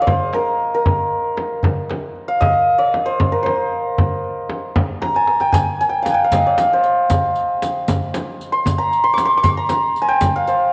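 A bright, shimmering hammered santur sits up front with a slapback echo, carrying a longing, melancholic melody in this Persian modal ensemble piece in 6/8, cut from a longer performance. Beneath it, a deep tombak and a close frame drum played with soft hands keep the pulse, and after a drum fill around 5.0 seconds a dry riq adds quiet, glinting jingles from 5.5 seconds. The whole ensemble rings out in a wet echo-chamber reverb.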